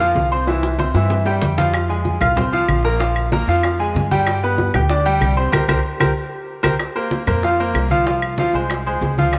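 Salsa in F minor, danceable and fiery, moving at a brisk 190 BPM in a straight 4/4 and cut from a longer piece. A bright grand piano sits up front with a brilliant, intimate tone, long sustain and audible action noise, spanning a broad register over the whole passage. Beneath it a thumpy upright bass with gut strings plays pizzicato in a dark, woody low range. Congas with a thin, low-tuned skin and saturated, compressed bongos ride in the background, with the bongos joining at 0.2 seconds and woody, close, dry claves entering at 1.7 seconds after a drum fill. The harmony moves through chords such as Fm, Bb5 and G, reaching a band accent from 5.5 seconds before a second fill leads into a new section at 6.8 seconds on a Bbsus2, all bathed in a wet plate reverb.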